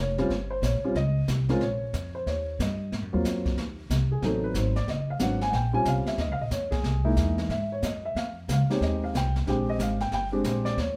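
A relaxed, sophisticated jazz piano trio swings through this cut from a longer piece, with a dark, mellow baby grand soloing over rootless extended chords from the start, a woody pizzicato upright bass sitting up front beside it, and a brushed kit with a boomy kick entering at 0.2 seconds, all set back in a moderate studio room.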